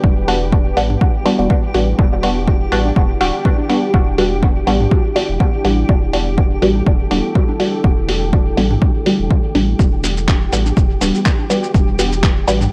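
A dry, gritty hardware sound with light reverb frames this meditative, cavernous dub techno excerpt in E minor at 123 BPM, with a 16th-note swing and an Em7 chord at the start of its 12.7 seconds. A punchy, tape-warm analog kick sits up front over a clean, smooth sine sub bass, while a muted, detuned sawtooth chord stab carries a phaser, dub echo and a filter sweep, and a moody, warbling ambient pad with chorus and a flickering, granular texture hang in the background, the pad, bass and texture pumping to the sidechain. A muffled, pitched-down sampler-style kit of cabasa, handclaps and hi-hat enters at 0.3 seconds, and overdriven electronic toms and congas with dub echo join at 0.9 seconds.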